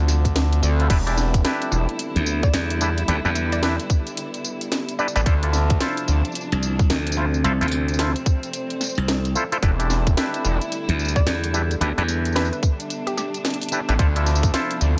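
Swung sixteenths at 110 BPM drive this playful, funky glitch hop excerpt in E phrygian, where an overdriven, up-front electronic kick (briefly dropping out at 0.4 s) and a layered kit with a cracking snare, bright hats, crash and tambourine sit under a growly, punchy slap bass entering at 2.2 s, short bursts of aggressive, saturated sawtooth synth bass, percussive stringy clav stabs with auto-wah, delay and sidechain pumping, a mellow, woody wave-folded pluck melody in the background from 2.4 s, a distant bowed chamber string section with vibrato and vintage 12-bit sampler grit, and a deep, moody detuned pad with chorus, all moving between Dm7 and Em7 in light reverb.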